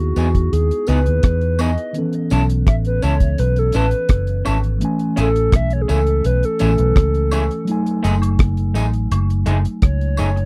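Lovers rock reggae in F# dorian at 84 BPM, longing and bittersweet, with a soft synth lead solo carrying the melody throughout this short cut from a longer piece: a reedy, woody FM lead with chorus, vibrato and tape echo floats over a mellow tine electric piano with tube saturation, moving through Emaj7, B9sus4, Amaj7 and F#m69. Underneath, a round, foam-muted fingered electric bass and a deep, dark reggae drum kit of kick, hi-hat and rim click sit up front, while an electric guitar through a small old amp adds slightly broken-up picked stabs. Tambourine and woodblock sit low in the mix, all captured in a dry, close 1970s-style studio sound.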